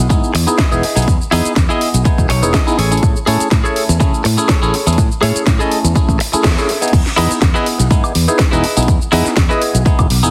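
Filtered disco house at 123 BPM in E major, this feel-good, joyful clip from a longer piece rides a gentle 16th-note swing over Emaj7 and Amaj7 chords. A stringy, percussive clav with phaser and a growly fingered electric bass fill the groove, while a twangy, picked clean electric guitar plays a riff and adds a fill at 2.1 s; all three pump with sidechain compression through a low-pass filter. A punchy, overdriven electronic kick sits up front beside a house kit of cracking snare, bright hats, shaker, woodblock and crash, and after a band accent at 6.4 s the drop lands at 6.9 s, all under a heavily compressed, radio-like sheen with light digital ambience.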